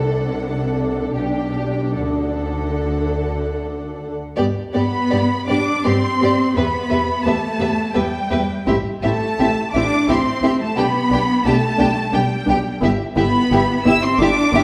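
A distant, soft-attacked violin section carries the yearning melody high above the ensemble, its expressive vibrato and portamento giving this slow, melancholic romantic movement for string orchestra its voice. Beneath it, a lush second violin line, dark and woody violas, smooth cellos and clear, lightly vibrating double basses play throughout, moving through G major harmonies in a rubato 3/4 at roughly 71-89 BPM. A generous scoring-stage reverb surrounds the strings in this fragment cut from a longer piece, with a new passage beginning at 4.4 seconds.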